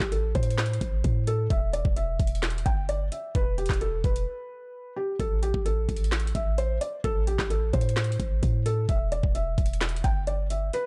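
A dark, warm production wrapped in digital ambience frames this menacing, eerie trap excerpt in A minor at 130 BPM with a half-time feel, where a soft, intimate felt-muted upright piano carries the melody through tape echo with audible action noise, a deep, boomy 808-style bass with a sine tone and noise layer sits beneath, and an up-front trap kit of knocking kick, woody snare, metallic hi-hats and handclaps carries vintage 12-bit sampler grit, with a short break between 4.3 and 5.2 seconds.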